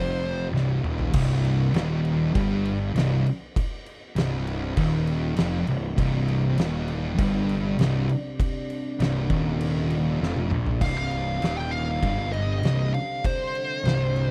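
Hypnotic and brooding, this stoner and doom metal excerpt rides two dark, picked fuzz guitars grinding a low riff in the background beneath a growly, overdriven picked bass up front and an oversized low-tuned drum kit with a fat snare and punchy kick that crashes in with a fill at 0.6 s, while a very quiet, nasal analog drone holds sustained chords at the start and again from 7.5 s, and a compressed fuzz lead guitar with wah and tape echo takes a solo from 10.8 s, captured in a dry, close 1970s-style studio sound.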